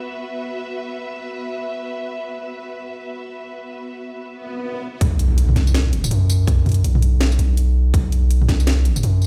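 Heard through a big sound system in a bare room and washed in large studio reverb, this short cut from a longer half-time drum and bass track feels spacious and heavy, with a swung sixteenth-note feel. It opens on a lush, intimate string section bowing soft-attack chords sul tasto with vibrato and a smooth top, the ensemble pumping under sidechain compression. A background swell and impact rises from 4.4 s and lands as the drop hits at 5.0 s, where the strings stop. A deep, mellow 808-style bass then sustains long sine notes with a fast attack and a decaying tail, sitting up front beside a tight, overdriven electronic kick. The layered drum kit brings a cracking snare, bright hats, tambourine and toms, all overdriven and low-pass filtered in a studio reverb.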